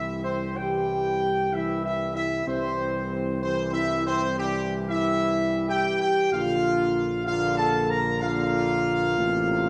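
A dark, distant trumpet section carries the regal, triumphant melody up front in this slow 63 BPM classical brass excerpt in C major, over sustained chords from a roomy French horn section with light vibrato and a soft-attack trombone section in the background, with a mellow tuba on bass, the harmony moving from C to Bb at 6.3 seconds within a wet scoring-stage reverb.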